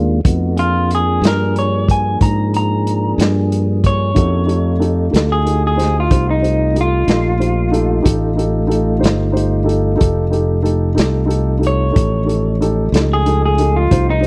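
A dry, close 1970s-style studio sound with small-room ambience frames this gritty, rollicking slow blues excerpt in 12/8 at 62 BPM, moving from Bb7 to F7 at 4.2 seconds. A fingered electric bass sits up front with a direct tone alongside a muffled, lo-fi vintage drum kit of hi-hat, tight kick and medium-tuned snare, while a lightly overdriven tonewheel organ holds sustained chords in the background through a slow rotary speaker, with key click audible. An electric guitar through a small old amp carries the melody from 0.6 seconds with a slightly broken-up, compressed edge, and a dark baby grand piano with audible action noise and short sustain joins the accompaniment at 4.1 seconds.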